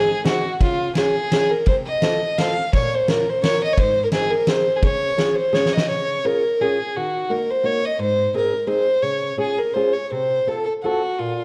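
A dark production set in a moderate recital hall reverb gives this short cut from a longer alpine folk dance tune a rounded, roomy glow, while its jolly, festive spirit comes through in a lilting, lightly swung waltz time. Up front, a single bowed fiddle carries the melody with a smooth top and light vibrato, its tone shaded and dusky. Beneath it, a fingerpicked old ladder-braced acoustic guitar supplies the accompaniment, sounding woody and boxy with the dull ring of old strings. A loose indie drum kit with a fat snare, tight kick and dark ride cymbal joins at 0.3 seconds, plays a fill from 5.5 seconds, and drops out at 5.9 seconds. From there the fiddle and guitar repeat the opening section as a duo, the harmony moving through simple major-key changes with a few minor and seventh-chord colours along the way.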